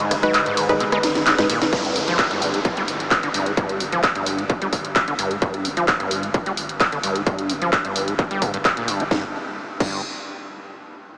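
A squelchy, distorted acid bass riff opens this relentless, hypnotic stretch of driving peak-time techno over muted dub chord stabs, a faint swarming drone, a deep saturated sub bass and an overdriven kit with a cracking snare, before a distorted kick lands at 1.7 seconds alongside a background downlifter, all soaked in a huge, dreamy reverb with a small-speaker sound.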